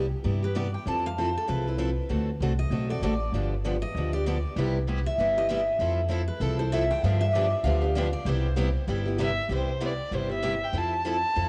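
This lively, swinging stretch of acoustic string swing in the gypsy-jazz manner moves at a brisk 194 BPM in C major, cut from a longer piece. A picked steel-string acoustic guitar plays a full-bodied accompaniment over a woody, thumpy upright bass played pizzicato on gut strings, and a steel-string guitar solo runs from the opening to 9.5 seconds, while a second steel-string guitar adds a bright, higher line marked by finger squeak from 0.4 seconds. At 4.6 seconds a boxy archtop guitar joins the comping. A smooth, nasal bowed violin with vibrato enters on the melody at 9.2 seconds. The guitars and violin carry a cassette-tape grit, and the whole homemade cassette recording sits in a lush hall reverb as the chords cycle through Cmaj7, Fmaj7, D7 and G7.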